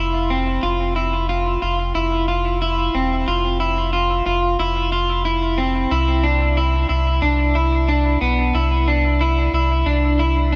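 The recording sits in a moderate echo chamber with a 1.8-second decay and a digital ambience, giving this echo-heavy dream pop excerpt a blissful, floating atmosphere in a straight 4/4. An electric guitar at the edge of break-up plays picked arpeggios between B3 and F4 for the full 10.6 seconds, its slightly broken-up, compressed tone placed up front and dressed in lush chorus, dub echo and shimmer reverb. Beneath it, a sub bass with an added octave holds down the low end from E1 to C2, its deep, full sine-and-triangle sound combining a fast attack with sustained notes that also sit forward in the mix. The harmony rests on an F5 chord before shifting to Cmaj9 at 5.9 seconds, as the two parts carry the passage together until it is cut off from the longer piece.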